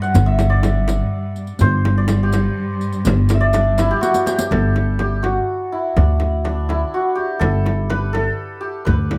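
A festive Persian modal ensemble piece in G dastgah mahur, cut from a longer work, moving at 82 BPM in a straight 6/8. Up front, a shimmering, ringing hammered santur carries the melody over a woody pizzicato upright bass, while a rich bowed cello sustains a low G drone with expressive vibrato and portamento in the background, and a riq with dark jingles adds color before a drum fill at 4.0 seconds leads into the second section. The riq drops out at 4.5 seconds and the cello at 4.6, leaving a deep, very quiet tombak and a small, bright frame drum played with hard hands to carry on beside the santur and bass in a moderate studio reverb.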